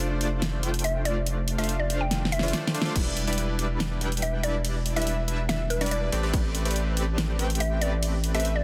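A dense, heavily limited future bass excerpt with light digital ambience, dreamy and emotional at 142 BPM in a half-time 4/4 feel in A minor, where punchy, detuned supersaw stabs and a thick, saturated sub bass both pump with sidechain alongside a layered pop drum kit with a fat snare and a fill from 2.1 to 3.0 seconds, a woody, warbling FM pluck melody with chorus and tape echo entering at 0.8 seconds, and a hard-clipped electronic kick landing at 3.0 seconds over chords moving from F6 to Em7 to Am11.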